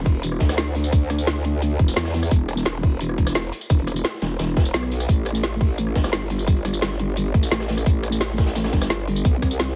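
A growling, aggressive sine bass with formant-filtered wobble, tube saturation and chorus sits up front from 0.0 seconds in this dark, mechanical drum and bass excerpt in E minor at 173 BPM, driven by a tight, up-front electronic kick, a layered electronic kit with woody snare, metallic hats, rim click and tambourine, and a gritty, saturated acoustic breakbeat kit with rolled-off top tucked into the background, all squeezed into a dry, heavily compressed radio sound.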